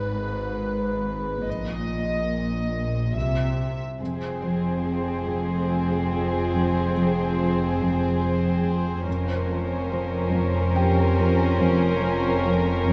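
An evolving, chorused analog drone of sawtooth, pulse-width and ring-modulated tones anchors this uneasy, tense suspense cue in 3/4, with a pure, floating sul tasto chamber violin section carrying the melody over close cello and double bass sections and a muted, mellow upright piano whose action noise sits in the background. At 4.0 s a woody, lush studio violin section adds a second line, joined by a distant viola section in accompaniment and a very quiet cello riff. The strings ring in a moderate concert hall, and the passage is cut from a longer piece.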